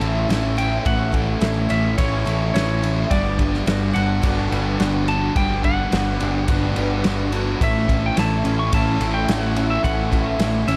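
A small-room haze wraps this short shoegaze and dream pop rock clip, moving at 107 BPM in a straight 4/4 in A mixolydian over A and Gmaj7 chords. A clean electric guitar carries the high melody with tape echo, while a shimmering, octave-doubled twelve-string acoustic picks arpeggios in the background through ensemble chorus and tape echo. Riffs come from a thick fuzz guitar drenched in distortion and lush chorus, a very quiet crunchy overdriven guitar and a bright, double-tracked raw garage guitar, all over a growling, overdriven picked bass up front and a loose indie drum kit with a punchy kick, medium-tuned snare and dark ride cymbal.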